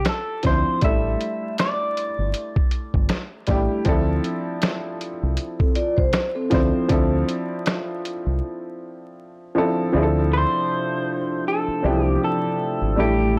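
A dark, slightly broken-up electric guitar melody opens this melancholic, hazy lo-fi hip hop excerpt over a woody, slightly detuned upright piano with a cassette-tape character, a round dub bass and a muffled, thumpy sampler-style kit with finger snaps; a mellow vibraphone with analog delay surfaces at 5.6 seconds, the drums stop at 8.2 seconds, and a warbling tape-like pad with chorus and reverb sustains chords from 9.9 seconds as the guitar returns, all captured in a dry, gritty recording with vinyl crackle.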